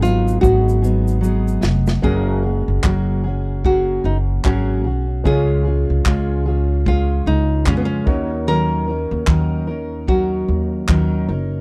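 Acoustic pop with a sunny, heartfelt mood, this excerpt moves at 75 BPM in 4/4 with a swung sixteenth-note feel in F# major. A bright, classical nylon-string guitar carries the melody, while a full-bodied jumbo steel-string guitar, also played with the fingers, sits up front as accompaniment. A smooth, vintage grand piano stays in the background, and a woody, dark pizzicato upright bass holds down the low end. The natural country drum kit is airy and polished, with a punchy kick, a medium-tuned snare, handclaps and tambourine, and it opens with a drum fill from 0.4 to 2.0 seconds while a grainy egg shaker sounds in the background until 2.0 seconds. The chords run from G#m7 to F#add9, C# and D#m7, all captured in a dry, close 1970s-style studio sound.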